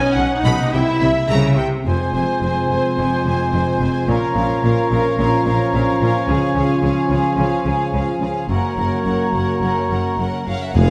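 Adventurous and swashbuckling, this cinematic, heroic film-score excerpt in F minor at 108 BPM opens with lush, bowed violin sections carrying melody and a second line over very quiet violas, a ringing harp in the background, and deep cellos and double basses, before airy flutes, a clear oboe, a mellow clarinet and dark, roomy French horns join at 1.9 seconds, all bathed in a wet scoring-stage reverb, until a dark, up-front tuba enters at 10.7 seconds and hard-mallet timpani strike at 10.8 seconds in the final moments.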